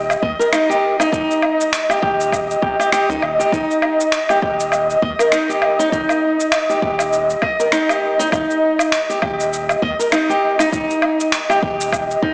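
Warm and earthy, this organic downtempo excerpt moves at 100 BPM in Eb major with a swung 16th feel, led by a dark, fingerpicked flamenco guitar playing up-front arpeggios through tape echo. Alongside it, an ethereal, airy pad holds mellow, detuned chords with ensemble chorus and sidechain pumping, while a round, deep analog bass adds tube saturation and its own pumping. Gritty, sampler-style woodblock, shaker and finger snaps sit up front beside a layered, overdriven electronic kick, all inside a blown-out, small-speaker sound with a long echo chamber reverb.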